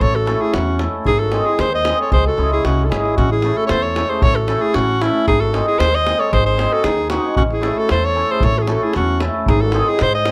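A clear alto saxophone, set up front with plate reverb, carries the melody from the first beat of this restless, fiery Balkan wedding-band excerpt, joined by a mellow clarinet on a smooth-topped second line in the background, a woody, thumpy pizzicato upright bass and a deep davul. At 0.3 seconds a hammered, shimmering cimbalom enters with ringing accompaniment. The band drives along at 114 BPM in a straight 2/4, cycling through A, G# and C#m chords in a small room with moderate ambience.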